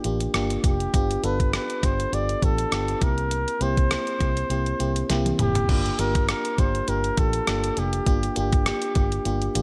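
Cut from a longer 1980s-style pop piece, this nostalgic yet urgent passage opens with a breathy, whispered flugelhorn melody up front with light vibrato, over mellow FM electric piano chords, a dark, foam-muted fingered bass and an up-front 12-bit drum machine with a thumpy kick and fat gated-reverb snare, all moving with a gentle sixteenth-note swing from Gm7 through G7 and C7 before a drum fill at 5.1 seconds leads back to Gm7.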